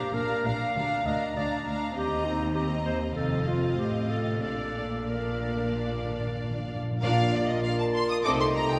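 Moving in a rubato 4/4 at 90-102 BPM, this graceful, cheerful classical-period orchestral passage in Bb major is cut from a longer piece, with a rich, smooth violin section singing the melody with vibrato over a lush second violin line, a solo clarinet, violas in the background and bowed cellos and double basses holding the bass. Soft-mallet timpani add a round fill from 4.4 seconds, and at 7.0 seconds an airy flute ensemble, a distant oboe, a dark bassoon and a roomy French horn section on sustained chords join the texture. The whole orchestra sits in a wet church reverb that gives the strings and winds a spacious, glowing bloom.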